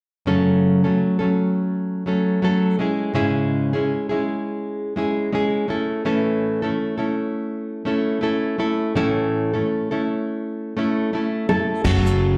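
Acoustic pop with a sunny, easy-going mood, this excerpt moves at 83 BPM in 4/4 with a swung sixteenth-note feel in A major, captured as a live gig through the venue's PA with a wet club reverb. A nylon-string guitar carries the accompaniment from 0.3 seconds, thumb-plucked and full-bodied with a deep classical tone and audible finger squeak, sitting up front and dressed in plate reverb and slapback echo. The harmony moves from F#m to C#m/G# and then to A before returning to F#m near the close. At 11.5 seconds a second nylon-string guitar, fingerpicked and classical in character, adds a short melody in the upper register with the same plate reverb and slapback echo. Moments later a bright, picked dreadnought steel-string guitar offers faint arpeggios in the background, while a round, punchy fingered electric bass lands up front on a low F#. A vintage brush drum kit with dark cymbals, a punchy kick and a shaker joins briefly with a natural, rolled-off top.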